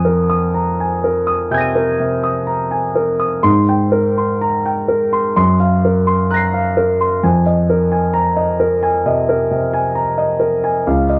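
A warm grand piano opens at once on a Fm11 chord, playing alone and up front in this short excerpt of impressionist classical music. The mood is wistful and mysterious, with a slow, rubato pulse around 60-68 BPM in 4/4 and the key of F minor, tuned to A4 = 437 Hz. The harmony drifts from Fm11 to Abmaj9, then to Gbmaj7#11 at 5.4 seconds, before settling on Fm7 at 7.2 seconds. The piano's range runs from Db2 up to Eb7, and its tone is natural and close. Light reverb and the worn, warbling character of old cassette tape give the sound a hazy pitch drift until the cut at 11.2 seconds.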